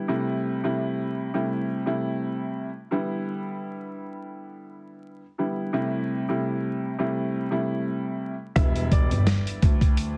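This is a boom-bap hip-hop piece with a reflective yet tough mood, and it is cut from a longer piece. A woody, slightly detuned upright piano opens it alone. The piano plays accompaniment chords that move between Am7 and Em7, colored by cassette-tape wear and filtering that trims both the lows and highs. At 8.6 s a gritty, compressed sampler-style drum kit enters up front, with a thumpy kick, medium-tuned snare, hi-hat and a 16th-note swing. Along with the drums comes a dark, boxy baby grand piano carrying the bass line, its action noise audible. Above them a smooth, vintage-toned second upright piano adds a brief high melody, with all parts playing until 10.2 s. The whole recording sits in a small room with light reverb and vinyl crackle, and its master is dense and heavily limited.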